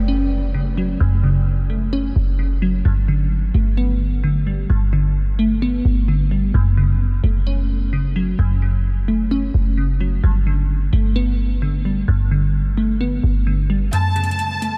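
A half-time 4/4 pulse at 130 BPM carries this dark, brooding trap excerpt in F# phrygian, where a glassy, crystalline wavetable pluck with chorus and phaser shimmers up front over a deep, boomy 808-style bass cycling between F#m and Gadd9, until at 13.9 s the bass and kick drop away, leaving the pluck joined by a faint metallic electronic hi-hat and a brief, lush bowed violin section on a high A5 with analog delay, all bathed in a huge, dreamy 6.9-second reverb.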